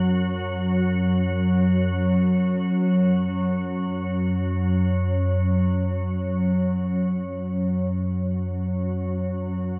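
Unsettling and ominous, this ambient passage is cut from a longer piece and rests on a single organ-like drone that plays alone from 0.0 to 9.8 seconds. The drone itself sounds calm, a pure sine tone in unison, with a slow attack, sustained body and long release that let each sound bloom and linger. Ensemble chorus, built-in reverb and tape echo thicken it, and it sits up front in the mix. Around it, a huge, wet ambient reverb with a 7.5-second decay fills the space and deepens the sense of unease. The music shifts into a new section at 7.1 seconds, and the whole piece is tuned to A4 = 436 Hz, lending it a faintly lowered cast.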